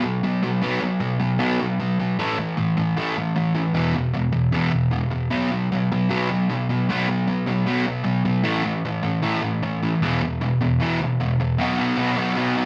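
A fuzz guitar plays alone up front, its electric tone dark and distorted, picked and double-tracked so it sounds thick and doubled. This is an upbeat, carefree rock excerpt in a straight 4/4 feel, cut from a longer piece. The guitar moves through power chords on B, A and E, cycling that pattern twice before settling back on B at 11.6 seconds for a brief closing section. Its range reaches from low E up into the middle register. The sound suggests a band playing live in one large studio room, with a moderate reverb giving the guitar some space around it.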